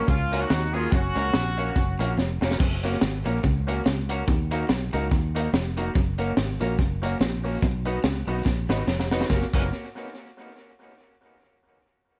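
A lightly reverberant mix with its top end capped frames this upbeat, bouncy ska cut at 143 BPM in F# major, swung on the eighths and drawn from a longer piece. A punchy, vintage horn section carries the melody only for the opening 2.2 seconds, while a gritty, saturated breakbeat kit with dark cymbals, a high-tuned snare and tape echo sits up front beside a round, foam-muted fingered bass. Beneath them, a clean hollow-body jazz guitar with tape echo accompanies in the background, a very quiet twangy electric guitar plays a low riff, and a woody upright piano with audible action noise and tape echo adds stabs over chords moving from F# through D#m and B, with two drum fills punctuating the changes.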